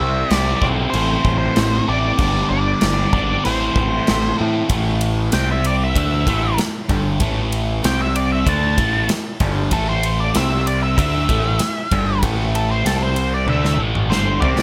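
A straight 4/4 pulse at 96 BPM drives this gritty, brooding classic rock cut in A minor, where a growling, up-front overdriven bass and a gated 80s drum kit with a punchy kick and bright cymbals (entering at 0.3 s) support a bright, phaser-tinged cranked stack guitar riff and a crunchy spring-reverbed rhythm guitar in the background, while a dark octave-fuzz lead guitar carries the melody and breaks into a solo from 4.7 s over power chords before a drum fill at 13.5 s.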